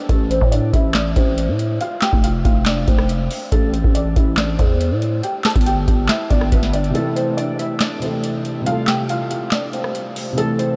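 A soft, felt-muted upright piano carries the melody through lush chorus, delay and a low-pass filter, floating over a dark, menacing trap beat in A minor at 140 BPM with a half-time feel and tuning at A4 = 438 Hz. A booming analog drum machine sets out a deep kick, crisp snare, handclaps, rim clicks and metallic hats, while a growling, buzzy 808-style bass sits up front until 6.9 seconds. A filter sweep running from the start gives way to a break at 7 seconds, as a worn, boxy grand piano takes up the accompaniment. A huge ambient reverb soaks the mix in a dreamy haze, and the clip is cut from a longer piece.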